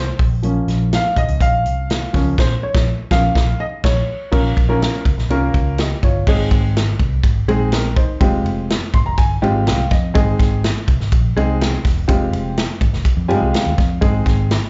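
Heard through a club's PA with the venue's reverb around it and the top end rolled off, this excerpt catches a live band playing uptempo 1960s-style soul in a straight 4/4, danceable and uplifting. A baby grand piano sits up front with a warm, intimate, natural tone, audible action noise and short sustain, dressed in plate reverb and slapback echo. It opens the cut with a solo that runs to 4.3 s, and the band hits an accent during the last stretch of it. A vintage muted fingered electric bass, dark, round and punchy through an amp, holds down the low end throughout, and a natural acoustic drum kit joins at 0.2 s with a tight kick, a medium-tuned snare, hi-hat, ride and crash. After a short bridge, the closing section moves between Ab and Fmadd9 chords, with the piano adding brief fills before the excerpt cuts off.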